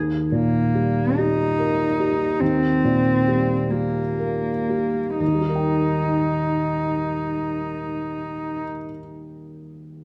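A felt-muted upright piano opens this slow neoclassical fragment, cut from a longer piece, its soft, mellow tone heard up close with the thick felt and a faint clatter of the action audible. A single cello joins at 0.3 s as a second line, bowed sul tasto with an airy tone, light vibrato and a gentle attack, sitting near the listener alongside the piano. The pulse moves in a lilting six-eight with free, rubato timing, and it slows through the opening 5.2 s before a contrasting second section takes over. The mood is hopeful and tender, with the piano reaching from deep bass into its upper register while the cello keeps to a narrow middle span until it stops at 8.6 s. A lush recital hall reverb surrounds both instruments, and the dark, intimate production suits the vintage character of the piano.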